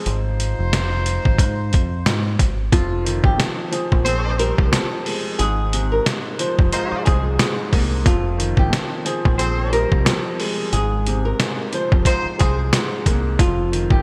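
A bright, 1980s-style digital sheen and a lush hall reverb frame this dark, tough boom-bap hip-hop excerpt, where a gritty, pitched-down sampler drum kit with a thumpy kick and gated reverb sits up front beside a deep, round picked electric bass. A woody upright piano with long sustain and a cassette-tape colour carries the chords, while a punchy horn section with light vibrato fires loose stabs through digital delay until 12.3 seconds. After an opening break, a fingerpicked flamenco guitar takes the melody at 2.7 seconds, its finger squeak audible under subtle chorus and delay.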